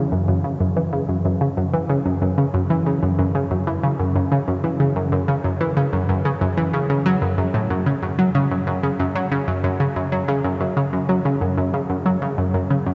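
A lone analog pluck opens this mysterious, hypnotic ambient excerpt, its detuned, ring-modulated tone sitting up front in a low register with a fast attack, short decay and a filter sweep. Chorus and delay thicken the synth, which plays solo for the full 12.9 seconds in a straight, steady metre. A long cathedral reverb casts everything into a vast, echoing space, and the top end is cut off above 7.8 kHz.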